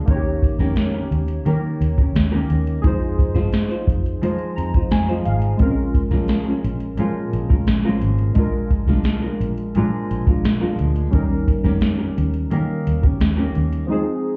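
A soft vintage rhythm box, overdriven with a deep kick, crisp snare and metallic hats, sits up front at 87 BPM in straight 4/4, carrying a lonely, wistful indie-pop and bedroom-pop excerpt in Bb dorian where a round, foam-muted fingered electric bass, a woody, thumb-plucked nylon-string guitar soaked in lush chorus and warbly pitch drift, and detuned, nostalgic lo-fi synth keys with a brief fill at 4.2 seconds move through Eb7, Fm7, Bbm7 and Bb7, the whole mix sounding muffled as if heard through a wall.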